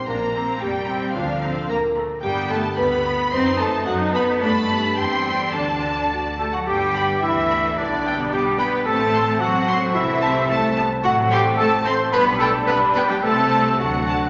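Moving in a straight 2/4 at 110 BPM in G major, this playful, mischievous film cue has a whimsical charm and is cut from a longer piece. A close, dry marimba carries the opening melody until 6.4 seconds, alongside a distant violin section that holds the tune high, while a second, lush violin section with expressive vibrato plays a countermelody. Beneath them, a smooth viola section, mellow French horns holding sustained chords, and a ringing, fingerpicked concert harp fill in the background. A bright, focused cello section and a double bass section with a clear, smooth top supply the bass throughout. From 6.4 seconds, a pure flute group, a solo clarinet in classical style and a soft-toned cor anglais join with further lines as the harmony drifts from G through A minor and a diminished chord to land on D. The whole ensemble sits in the generous, wet reverb of a scoring stage, with a gently rounded, darkened top end.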